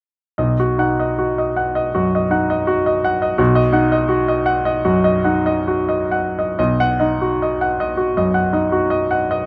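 A clear, up-front grand piano with a smooth, vintage tone and short sustain plays alone in this lyrical, warm romantic character piece, shaped with rubato in 4/4 and heard through light reverb and close, detailed microphones, moving into a new section at 6.6 seconds in this excerpt cut from a longer work.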